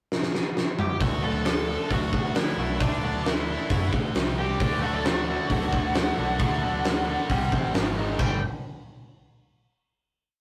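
A straight 4/4 pulse at 134 BPM opens with a drum fill from the big rock kit in the pickup bar, before the band lands on the pre-chorus at 1.0 seconds in this cathartic, bittersweet quiet-loud alternative rock piece. The kit sits up front in a big room, with a fat snare, punchy kick and a dark, rolled-off top, driving a big rock groove across crash, hi-hat and toms, while the round, amped, overdriven picked bass is locked to the kick. Above, a fuzzy, distorted octave-fuzz lead guitar states a motif-based melody in sentence-like phrases, partly doubled in octaves. In the background, a bright, compressed distorted guitar drives eighth-note power chords, joined at 4.6 seconds by a second overdriven guitar on the same kind of riff, while a slightly broken-up guitar adds short syncopated chords. The harmony moves between D6 and C5 before stepping through Ab5 to a final G5 chord at 8.2 seconds, all heard through a rough rehearsal-room sound with warm saturation and moderate studio reverb.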